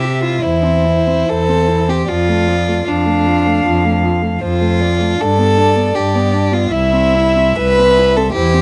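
A rubato 4/4 pulse drifting between 67 and 82 BPM carries this tender, slow romantic movement for string quartet in C major, cut from a longer piece, with harmony passing from C/E through Dm/F and G back to C. The first violin carries the melody with a soft attack and light vibrato, while the second violin, bowed sul tasto and up front, traces an intimate, airy second line; the viola adds a woody, nasal accompaniment in the background, and the cello holds the bass with a pure, floating tone. Light reverb frames the dark, warm production.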